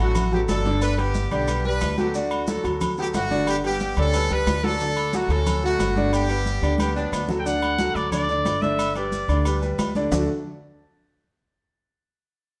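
Salsa, festive and danceable, with a brilliant, tight horn section carrying the melody up front over a polished concert grand piano, a woody, thumpy pizzicato upright bass, ringing agogo bells and timbales, soft-handed congas and grainy maracas sitting in the background, until a drum fill at 6.8 seconds hands the melody to a clear trumpet with light vibrato at 7.4 seconds, the band playing live together in a moderate stone room.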